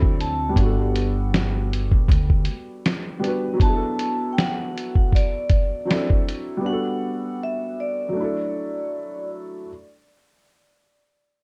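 Nostalgic and dreamy, this lo-fi hip hop excerpt in D major moves at 79 BPM with a swung 16th feel, cut from a longer piece. A ringing, metallic vibraphone with medium hard mallets and slow motor vibrato carries the melody over a soft, felt-muted upright piano with cassette tape character, while a hollow, flute-like pad sounds only briefly at the start and a woody, growly pizzicato upright bass sits up front until 2.4 s. A muffled, compressed sampler-style drum kit with a thumpy kick, hi-hat and snare adds vintage 12-bit grit until 6.5 s, within a dark production touched by light reverb.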